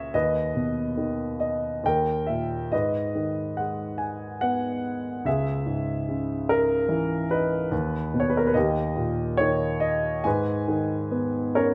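A solo grand piano sits up front in a light reverb, its tone warm and present with a long sustain that lets each chord hang in the air. This is a lyrical classical piece in 3/4, a short passage cut from a longer work, and its mood is melancholic and reflective. The beats fall unevenly, and the rubato gives the phrasing a breathing, unhurried quality. The harmony moves through minor chords and a colourful Bmaj9/D# voicing, spanning the instrument from C#2 up to G#5. Near the close, the piano plays a brief fill from 11.1 to 11.7 seconds before the passage breaks off.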